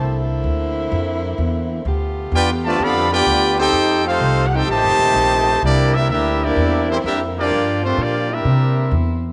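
A moderate echo-chamber reverb with a small-room ambience frames this energetic, brassy big band swing excerpt in C major, moving at 127 BPM in 4/4 with a swung eighth-note feel. A brilliant, up-front trumpet section carries the melody with light vibrato over a clear, distant trombone section on a second line, while a tight saxophone section holds sustained chords with vibrato in the background. Underneath, a woody, pizzicato upright bass sits up front through a progression of dominant ninth chords with a brief Gm7; the brass stops at 8.9 seconds while saxophones and bass continue to 9.3 seconds.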